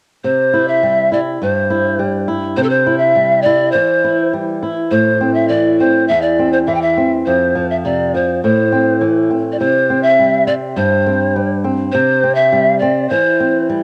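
A polished pan flute carries the melody up front, its pure, woody tone marked by a crisp chiff, expressive vibrato and the grain of cassette tape, over a dark, fingerpicked flamenco guitar whose finger squeaks come through close and present. This festive, earthy Andean folk piece moves at 102 BPM in a straight 2/4, with both parts playing from 0.2 seconds as the harmony cycles from C through Am and F5 before returning to C at 9.6 seconds. A wet spring reverb and small-room ambience give the home cassette recording an intimate character, and the passage is cut from a longer piece.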